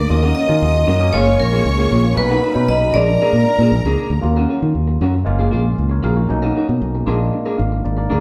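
A direct, amped fingered electric bass sits up front in this danceable, glamorous disco passage in Eb minor, moving at 116 BPM in a straight 4/4 feel over a cycle of Ebm7, Gbmaj9, Bmaj7 and Bb7 that repeats twice. A metallic, ringing vibraphone struck with hard mallets carries the melody with a medium motor vibrato and a boxy small-room tone until 3.7 seconds. It is joined by a lush, focused studio string section playing a close, bowed second line with vibrato, which drops out at 4.2 seconds. Underneath, a bright, barky tine electric piano runs through a combo amp with a phaser, and it rounds off the passage with a fill from 7.3 seconds. A picked, compressed electric guitar, slightly broken-up and warm, adds accompaniment. The whole band sounds as though it is playing live in one room, bathed in a wet, large studio reverb, and the passage is cut from a longer piece.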